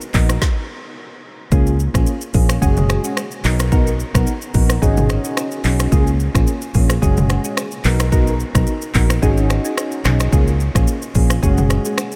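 An up-front deep house drum kit drives this joyful, sunny afrobeats excerpt at 109 BPM in Db mixolydian, its deep kick, woody snare and smooth hats layered with finger snaps, handclaps, rim clicks, shaker and toms over a lightly swung 16th-note feel. A fingered electric bass, foam-muted and round, sits beneath mellow electric-piano-like synth keys treated with chorus and phaser. After a brief stop from 0.4 to 1.5 s, the groove cycles through Db6, Gbsus2, Cbmaj7 and Ab7sus4 in light reverb and digital ambience.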